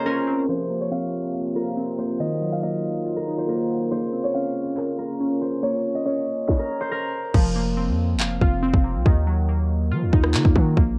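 A hard-clipped kick, sharp snare, warm hi-hats, handclaps, rim clicks and crash from the up-front drill drum kit drive this menacing half-time drill excerpt at 140 BPM, tuned to A4 = 439 Hz, with the kit entering at 0.5 seconds after a brief break. Glassy, chorused digital keys with a filter sweep carry the tense Fsus4, Ebmadd9 and Bbmadd9 chords while a ringing, fingerpicked concert harp plays the melody, both low-passed and dulled by cassette tape, over dark, vintage French horn chords that share the tape grain. At 7.3 seconds the hi-hats drop out and a punchy, heavy 808-style bass with a noise layer enters.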